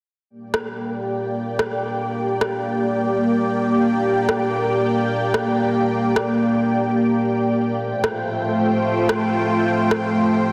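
Anthemic and euphoric, this brief cut from a festival progressive house track in straight 4/4 rests on a lush, detuned sawtooth unison pad with a sub octave, slow attack and long release, sustaining bright chords up front through chorus and phaser, while a layered electronic rim click with a soft-clipped snare ticks in the background from 0.5 seconds, all bathed in a wet, lush hall reverb and a dense, heavily limited modern master.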